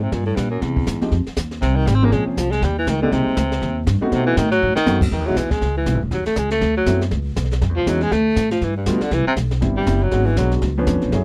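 Playful and sophisticated, this brisk small-group swing and bop excerpt moves at 240 BPM in 4/4 with a light swing on the eighth notes. A mellow baritone saxophone takes the solo from the start, its vintage subtone tone carrying gentle vibrato up front in the mix, while a woody, growly upright bass played pizzicato on steel strings sits alongside it. A brushed drum kit sits further back, pairing dark cymbals and a high-tuned snare with a boomy kick, and it drops in a fill at 4.6 seconds. A concert grand piano joins at 1.0 second with intimate accompaniment, its deep bass and audible action noise giving it a natural presence. The harmony moves quickly through rich extended chords such as Gmmaj7, Bbm9, Emaj7 and C#7b9 across two passages. The close, dry studio sound, with little reverb, recalls a 1970s session.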